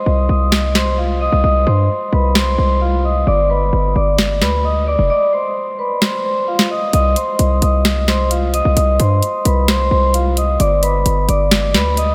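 This is a hard-hitting, melancholic trap cut at 131 BPM in 4/4 with a half-time feel, taken from a longer piece in C harmonic minor. It opens on a break that runs to 6.9 seconds, with the kick muted from 5.1 seconds, so the electronic drum kit's sharp snare and bright hi-hats carry the pulse. Up front, a ringing, metallic vibraphone played with medium mallets and the motor off carries the melody from the very start, softened by a low-pass filter and trailed by delay. A punchy, heavy 808-style bass enters at 0.1 seconds: sine-based with a noise layer, a fast attack and a decaying tail, sitting up front between F1 and G2. The harmony moves from Cm to G, then F5, and back to Cm and G, and the whole dreamy mix is soaked in a cathedral reverb with a 6.2-second tail.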